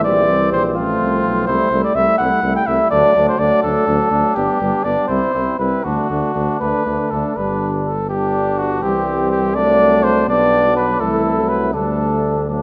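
A brass quintet opens together in a noble classical passage in 6/8, with the punchy, warm cornet up front on the melody over a mellow trumpet second line with vibrato, a bright trombone and a smooth-topped French horn with light vibrato sitting in the background, and a clear, distant bass trombone anchoring the bass, the whole excerpt bathed in a wet recital hall reverb as it moves into a new section at 7.4 seconds.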